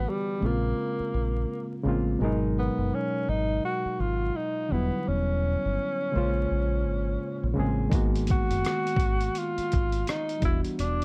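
Lo-fi hip hop at 84 BPM in G# dorian, reflective and nostalgic, with a swung 16th-note feel and a soft haze of vinyl crackle and light reverb over a cycle of A#m7, G#m7 and Em7 chords. Up front, a mellow tenor saxophone carries a jazz-style solo melody with vibrato, scooped notes and a smooth top, softened by a low-pass filter and plate reverb, beside a reedy, barky electric piano lightly overdriven through its built-in speakers, while a dark, round dub bass played with the fingers gives a punchy low end throughout. At 7.9 s a compressed, gritty sampler-style drum kit enters with hi-hat, rim click and a thumpy kick, carrying 12-bit sampler grit and the sound of a small room.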